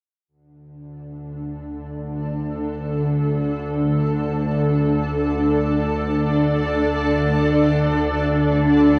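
Drenched in a cavernous cathedral reverb and passed through worn cassette tape, this recording warbles with a pitch drift that makes the ground feel unsteady. It is a short cut from a longer dark ambient drone piece, unsettling and dark, floating in free time. A bowed-like drone enters low at 0.9 seconds, a tense, string-like sawtooth tone roughened by a noise layer and ring modulation, with vibrato, a bright edge and its own built-in reverb. At 1.4 seconds a granular cloud pad joins higher up with sustained chords, blurred and full-bodied, its detuned sine voices evolving under built-in and shimmer reverb. Both parts sit up front, rising gradually out of silence as they fade in through to the end.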